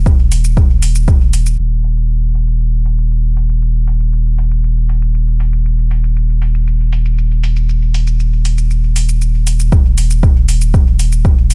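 A dry, close-sounding mix with a low-pass filter over the whole, this short cut from a longer dub techno piece feels hypnotic and hazy at 118 BPM in a straight 4/4. A pure sine sub bass sits up front throughout, deep, clean and smooth with a fast attack and sustained, dark tone around Eb1, pumping against a sidechain. An overdriven electronic kick drum, deep and layered, with the character of being re-recorded in a small room, hits up front from 0.1 to 1.2 seconds, then drops out and returns at 9.7 seconds. Beneath it, a quieter layer of electronic shaker and hi-hat runs the whole length, the metallic hats tape-warm, with low-pass filtering on both the percussion and the hats. Between 1.6 and 9.7 seconds a filter sweep carries a middle passage where the sine bass and filtered shaker and hats hold the groove before the kick comes back.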